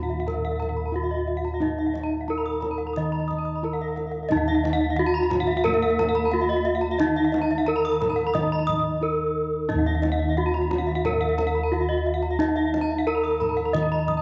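Balinese gamelan at a moderate 89 BPM in Eb pelog, brilliant and ceremonial in mood, cut from a longer piece: a vintage-toned bronze metallophone struck with a wooden mallet carries the up-front melody, while soft bossed gongs played with padded beaters give a round, mellow bass. Two higher metallophones weave arpeggios, one airy and set back with padded disc mallets and a slapback echo, the other close-miked, dry and full, and a deep, distant kendang played with soft hands sits in the background. From 4.3 to 9.7 seconds a bright, horn-mallet metallophone adds lower accompaniment, and the paired tuning lends the bronze a shimmering beat throughout, in a moderate plate reverb with a band-limited top end.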